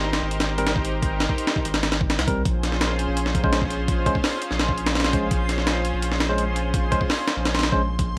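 A raw, frenetic stretch of drum and bass with a jungle edge, cut from a longer piece, wrapped in vinyl crackle and light reverb and moving at 168 BPM in Bb dorian over Abmaj9 shifting to Bbm9 at 2.5 seconds. Up front, a gritty, pitched-up breakbeat kit with a thumpy kick and high-tuned snare drives beside a deep, saturated sine sub bass, while a lush, detuned sawtooth pad with chorus holds sustained chords above. Barky tine electric piano stabs sit in the background through dub echo, and from 3.7 seconds a very quiet reversed, granular texture adds a dreamy shimmer.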